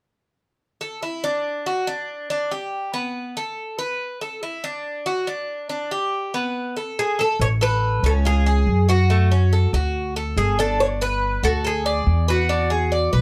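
A straight 4/4 pulse at 141 BPM drives this sunny, danceable excerpt of Cuban son and guajira in A major, where an up-front tres with metallic, partly octave-doubled double strings picks arpeggios from 0.8 seconds, a brighter second tres adds a picked melody from 7.0 seconds, and a dark, woody, thumpy gut-string upright bass enters pizzicato and up front at 7.4 seconds, all in a small room with moderate reverb.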